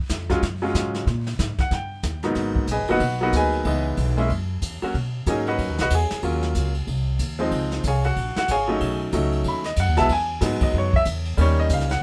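Swinging and moody, this brief excerpt from a longer jazz piano trio piece moves at a brisk 186 BPM in 4/4 with a swing feel on the eighth notes, centred on G# minor. A bright upright piano carries the melody as a solo across the whole passage, entering at 0.3 seconds with a brilliant, present tone and short sustain that sits up front in the mix. Underneath, a pizzicato upright bass with gut strings gives a woody, thumpy foundation in its low register, while a brush-played drum kit adds brushed snare, hi-hat, boomy kick and dark ride cymbal in an airy small-room sound. The harmony passes through rich jazz colours such as Ebm11, G#m7, Bmaj7 and C#maj7 before arriving on D#7 at 11.4 seconds. Light reverb rounds out the polished acoustic trio, with the drums sitting a little further back than piano and bass.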